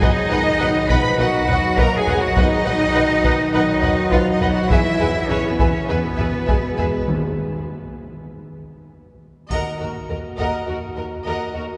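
An intense, clear cello section carries the bass line at the front of this heroic, dramatic excerpt of an epic orchestral film score in Eb minor, moving at 102 BPM in a straight 4/4. Above it, a lush violin section sings the melody with vibrato and focus, while a second, softer-edged violin section adds a smooth, expressive line, and distant violas fill in the accompaniment. Dark, roomy French horns and mellow background trombones sustain chords, with a chamber double bass section deep beneath, as heavy-stick taiko drums drive the music forward. The harmony moves from B to E before a break at 7.1 s, where the trombones stop and hard-mallet timpani enter on Eb, followed by a drum fill at 8.6 s. At 9.5 s the music lands on Eb minor, touched by a bright triangle in the background. A cathedral reverb with a long tail surrounds the orchestra, giving it the sound of a church or concert hall.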